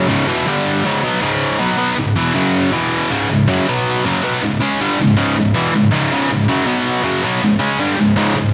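A rough home demo mix sits in a moderate plate reverb with a long 2.7-second tail, giving this short cut from a longer metal piece a dark, epic atmosphere. A heavy, high-gain electric guitar plays alone from start to finish, double-tracked and up front, its picked tone bright and saturated with distortion and touched by delay. The riffing moves through minor and power-chord shapes in a straight 4/4 feel, spanning from low C#2 up to C#4. Around 3.1 s the passage shifts into a new section, opening on C#5 and B5 before settling on a C# minor chord, then turning to B5 and back to C#5 near the close at 8.5 s.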